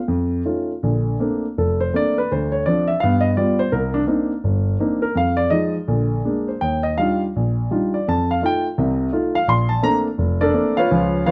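A swinging 167 BPM pulse in 4/4, loosened by rubato, carries this brief solo jazz passage in Bb major, sophisticated and playful in mood. A dark, mellow grand piano sits up front alone, ranging from F1 to C6 with short sustain and a natural tone, moving from an opening Faug7 through rich ninth chords such as Bbmaj9, Dm9 and Ebmaj9 before settling back on Bbmaj9 at 9.5 seconds. Close, detailed miking and light reverb keep the sound intimate for this short cut from a longer piece.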